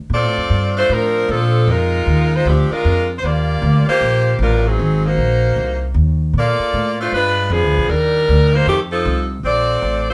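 From 0.1 s, a bright saxophone section and a plucked upright bass begin together in this energetic, joyful big band swing piece in Bb major. The tempo is a brisk 154 BPM in 4/4, with a swing feel on the eighth notes. The saxophones carry the melody as a tight ensemble with light vibrato and a clear jazz phrasing, sitting up front in the mix. Beneath them, the woody, steel-strung upright bass holds the low end, also placed close to the listener. The harmony moves through rich jazz chords such as Bbmaj9, Ebmaj9 and a G7b9 passing through Cm9 to F7 before settling back on Bbmaj9. The band plays live in one room with a wet studio reverb around it, and the recording is a short passage cut from a longer piece.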